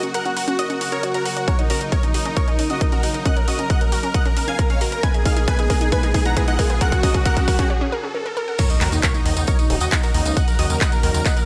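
Bittersweet and soaring, this 135 BPM uplifting trance excerpt in Eb minor moves from Gb through Ebm7 and Abmadd9 as a huge, thick supersaw melody rides over a round, warbling analog pluck line with chorus and delay, dark bowed chamber strings, and a lush unison-pluck arpeggio under a filter sweep, all pumping to the sidechain. Meanwhile an overdriven big-room kit of crash, handclaps and hi-hat is joined at 1.5 s by a punchy, tape-warm kick as a drum fill runs into a brief break at 7.7 s. A very quiet riser and impact lead to the drop at 8.6 s, where a jingly tambourine enters and a gritty, nasal, saturated synth bass arrives just after, all on a moderate scoring-stage reverb.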